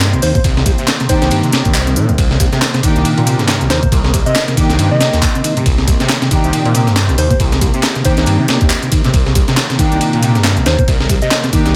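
A gritty, pitched-up sampler breakbeat kit sits up front, its thumpy kick and high-tuned snare compressed and tape-warm, driving a swaggering, energetic breakbeat groove with a swung 16th-note feel. Behind it, a crisp electronic garage kit adds layered handclaps and hi-hats that sound re-recorded in a large room. A thick, saturated detuned saw bass churns through a phaser, while a mellow, round tonewheel organ plays a dark riff through chorus vibrato and a slow rotary speaker. From 0.2 seconds a gentle FM synth lead with a sub octave warbles high up, colored by an old record sound and 12-bit sampler grit and trailed by its own dub echo, and from 1.1 seconds a smooth, bowed studio string section adds stabs with dub echo. In the background a swirling sawtooth pad holds a Cm9 chord with slow attack and sidechain pumping, and the mix sits in light reverb in this short cut from a longer piece.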